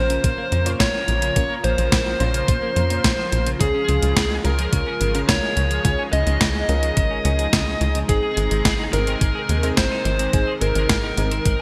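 Bright 1980s-style digital production and a lush hall reverb frame this moody, driving synthwave excerpt at 107 BPM in 4/4, moving from Bb minor through Db to Ab. Up front, a dark, distorted high-gain lead guitar with delay carries the melody, joined by a very quiet, pure FM synth bell on a second line, while a tight, punchy sawtooth sequencer bass with filter plucks and sidechain pumping sits beneath a smooth, detuned analog pad that also pumps and shimmers with chorus. A thumpy, tape-warm electronic kick and a 12-bit drum machine's hi-hat and medium-tuned snare with gated reverb drive the track, as a dreamy chorused FM electric piano plays stabs and a clean, compressed electric guitar riff with sampler grit and delay sits in the background.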